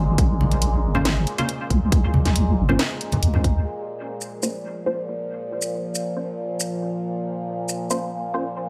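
A detuned, resonant drone with moving overtones and a deep, wobbling bass open this brooding, dark deep dubstep excerpt in Bb minor, set at 138 BPM in a half-time 4/4 feel. At 0.2 s a tight, layered electronic kick and a garage kit of hi-hat, shaker and cracking snare arrive up front with a tape-warm character, joined at 0.4 s by low-tuned, thick-skinned congas in a small room. A muted dub chord stab built from sawtooth and square waves, with a filter pluck, enters at 0.9 s, colored by phaser, ensemble chorus and dub echo. The bass, kick and congas drop out around 3.6 s as the harmony moves from Bbm to Bb5, leaving the drone, stabs and garage kit to carry the rest. An echo-chamber reverb with digital ambience surrounds the whole track, while the chorused drone sustains with a slow attack and long release to the close.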